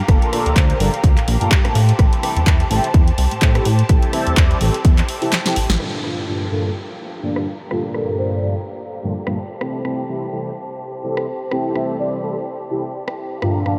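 A punchy, layered electronic kick drum sits up front in this sensual, funky filtered disco house passage, cut from a longer piece, and carries the groove until it drops away at 5.0 seconds. Beside it, a plucky analog bass of sawtooth, square and triangle tones with ring modulation and tube saturation adds a fast-attack, decaying bite before falling silent at 5.8 seconds. Mellow synth brass, round and dark with detuned sawtooth and sub-octave layers, chorus, phaser, vibrato and a cassette-tape character, holds the accompaniment throughout, while a lush studio violin section sustains bowed chords between Gm7 and Am7. A house kit of handclaps, hi-hat, rim click and a punchy snare keeps a lightly swung sixteenth-note feel, with a drum fill from 5.3 seconds and a band accent at 5.7 seconds marking the turn at 5.8 seconds, after which a filter sweep runs across the second half. The bass, brass, strings and hats pump with sidechain, and the whole mix floats in a huge, dreamy ambient reverb.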